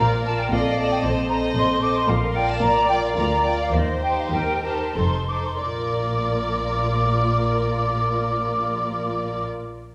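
An airy flute section with crisp attack rides above a smooth violin section carrying the melody in this graceful, lively excerpt from a quick classical-period symphony movement in Bb major and 3/4 at 89-116 BPM, where a second violin line, lush violas, expressive cellos with portamento and rich double basses fill out a rubato texture that slows from 1.3 to 5.6 seconds before settling back on Bb, all heard from further back in a wet scoring-stage space.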